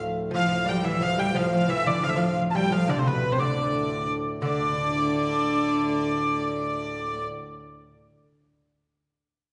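Ancient and mysterious, this brief excerpt of a medieval dance in D dorian moves at 176 BPM in a straight 3/4, with a nasal, earthy hurdy-gurdy carrying the melody up front over a reedy, breathing harmonium drone that sounds from 0.0 s, while a pure, floating viola da gamba and a delicate, fingerpicked gut-strung lute share a second line, the lute sounding on until 7.9 s, all heard from further back in a recital hall's lingering reverb.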